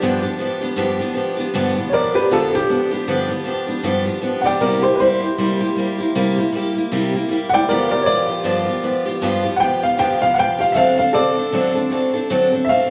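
Rowdy and upbeat, this rock excerpt moves in 4/4 with a light swing on the eighths as a woody, slightly detuned upright piano carries the melody up front, its audible action noise and intimate character wrapped in slapback echo and analog delay. A bright, picked steel-string acoustic guitar plays accompaniment alongside it with its own slapback echo, both parts sounding together from 0.0 to 12.9 seconds over a G7, C7, G7 and D7 progression. The sound is that of a live gig heard through the venue's PA, with club reverb and a small room ambience.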